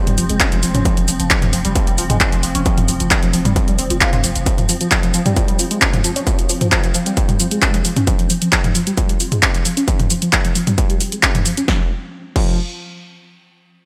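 Opening on a swarming, detuned drone that sits in the background under built-in reverb, this dark, relentless slice of driving peak-time techno at 133 BPM quickly adds a gritty, screaming synth lead riffing around F with chorus, delay and a filter sweep, plus a growling 808-style bass that drops out at 4.5 seconds. A punchy, overdriven analog drum machine with snare, handclaps, hi-hats, shaker, toms and crash sits up front alongside a distorted, layered electronic kick, while the lead, bass and drone all pump with sidechain. The bright 1980s-style digital production is bathed in a lush hall reverb, and the chord drops away at 11.7 seconds as the drone ends and the lead and drums carry on briefly.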